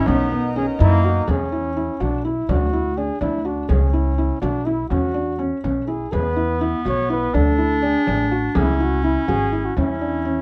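A mellow flugelhorn melody opens this playful, hopeful contemporary chamber piece in 5/8 at 247 BPM (eighths), tuned to A4 = 436 Hz, alongside a bright, up-front clarinet second line and a reedy, breathing pedal harmonium in the background; both drop out at 1.3 seconds, while a felt-muted upright piano's soft, intimate arpeggios, a thumpy, woody pizzicato upright bass and a deep, distant frame drum played with soft hands carry the E mixolydian harmony until the clarinet returns at 6.1 seconds, all heard through close, detailed microphones and light reverb in a passage cut from a longer work.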